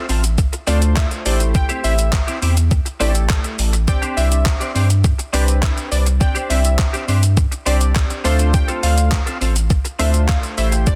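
A dense, heavily limited modern mix with little reverb carries this carefree, upbeat dance-pop excerpt at 103 BPM in straight 4/4, cycling through Dm7, Am7 and Csus2. An overdriven, sampler-style drum machine with a thumpy kick, handclaps, hi-hat, shaker and gated reverb sits up front beside a deep, round sine sub bass that pumps with the sidechain. A bright, twangy twelve-string electric guitar riff with ensemble chorus and a punchy, detuned unison lead melody with tape echo set in the background open at 0.0 s, and glossy pulse-wave retro synth keys with a filter sweep join at 0.7 s.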